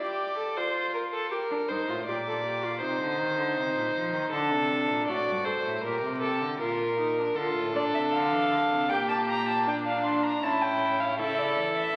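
A straight 4/4 pulse at 79 BPM carries this solemn, driving baroque-style fugue for string quartet in G minor, cut from a longer piece. A violin with light vibrato and a smooth top opens the second line alongside a distant, nasal viola. A rich cello enters on the bass at 1.7 s, and a close, reedy gut-string violin takes up the high melody at 7.8 s. Period-style bowing rings through a wet recital hall, all heard through the crackle of a very old 78 rpm record.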